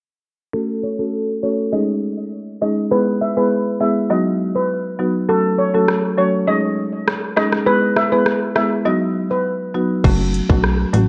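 Sultry and hypnotic, this dancehall excerpt opens with a shimmering, mellow steel pan melody trailed by digital delay over a woody, dark marimba accompaniment, both softened by a low-pass filter as a filter sweep runs through the opening section. An electronic island pop drum kit with a tight kick, metallic hi-hats, crash cymbal and rim clicks, roughened by vintage 12-bit sampler grit, enters at 5.9 seconds; a break arrives at 8.9 seconds, and a punchy, funky analog bass with a fast filter pluck drops in at 10.0 seconds. Light reverb and the worn, warbling pitch drift of old cassette tape colour the recording.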